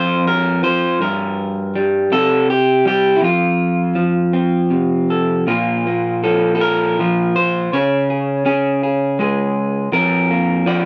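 A slightly broken-up electric guitar, picked through a small old amp and sitting up front, carries this nostalgic, peaceful folk fragment alone in a free, rubato 6/8, moving from a Gm, C5 and F opening into a passage of Bb5 and Db5 power chords from 5.5 s, all wrapped in a dark production with a moderate studio reverb.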